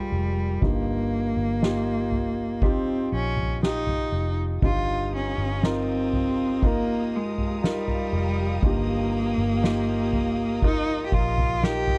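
This emotional, hopeful pop ballad fragment opens with a rich, bowed solo cello singing the melody up front, its smooth, even vibrato sitting close over a concert grand piano's accompaniment with deep bass and a round, punchy, foam-muted fingered electric bass with a vintage amped tone. At a slow 60 BPM in a straight 4/4, the harmony moves from Fmadd9 to Ebadd9 at 0.6 seconds, the same moment a soft-mallet acoustic drum kit enters with a boomy kick, medium-tuned snare and toms in a natural hall-like space. At 4.6 seconds a dark, woody studio string section arrives in the distance, its lush bowed ensemble chords carrying vibrato well beneath the other parts. The overall sound is dry and intimate, a close 1970s-style studio recording in a small room.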